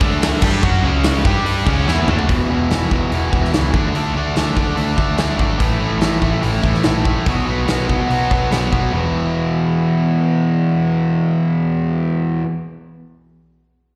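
Hard rock cut from a longer piece, driving and heavy at 144 BPM in E dorian, heard live through a venue's PA in a reverberant hall with faint mains hum, where an up-front overdriven semi-hollow guitar and a compressed, scooped distorted guitar with slapback echo churn out power-chord riffs over a dark, foam-muted picked bass and a big, natural acoustic kit with a punchy kick, while a double-tracked high-gain guitar sits in the background only until the drum fill that ends at 2.3 seconds, and the drums drop out at 8.8 seconds as the riff moves to E5.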